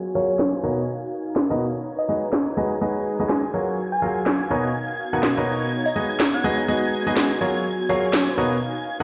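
A clear, worn grand piano sits up front with a short-sustained riff spanning B2 to F#5, touched by low-pass filtering and delay. This is an energetic, soulful piano house excerpt at 124 BPM in 4/4 with a 58% swing on the sixteenths, set in G# dorian and tuned to A4 = 441 Hz, moving through F#maj9, Bmaj9 and G#m7. A cracking, layered electronic snare enters at 0.4 s, re-recorded in a small room and placed up front, while a round, keys-like FM synth lead with chorus and delay carries the melody between C#5 and G#5. Behind them, a distant, lush violin section holds bowed chords at G#6 with vibrato and portamento, and an ethereal, detuned pad with a slow attack and long release fills the background from B3 to A#5. Filter sweeps run across the drum, piano and violins for the full 9 seconds, and the whole mix sits in a stone-room hall reverb with a 2.1 s decay, dulled above 11.0 kHz as if played through a big sound system in a bare room.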